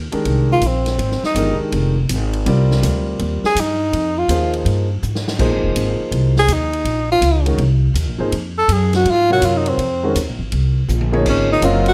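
Spiritual and intense, this modal jazz passage, cut from a longer piece, swings at 164 BPM in 4/4, moving from an Fm9 chord into Bb minor at 5.4 s. A breathy, whispered tenor saxophone solos up front with a mellow vibrato and plate reverb, over a woody, thumpy pizzicato upright bass with gut strings and a warm grand piano with long sustain. A distant, roomy big-band drum kit with dark cymbals and a punchy kick swings underneath, adding a fill at 5.0 s, all set in light reverb.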